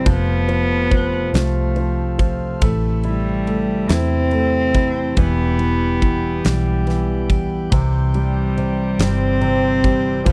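This dramatic, aching six-eight pop ballad, cut from a longer piece, opens with a bowed solo cello carrying the melody up front, its tone pure and floating with a soft attack and a smooth top, played sul tasto between G3 and C4. A grand piano with a present, polished sound and long sustain accompanies it, while a chamber organ on light, bright flute stops holds sustained chords with a touch of chiff. At 0.1 seconds a huge arena drum kit arrives with a punchy kick, fat snare and ride cymbal, sounding acoustic and big-roomed, alongside a dark, round, foam-muted fingered electric bass that is amped and sits up front. The slow pulse of 47 dotted-quarter beats per minute moves through F, Am, Em and C. The mix is dry and close in a 1970s studio style, with little reverb.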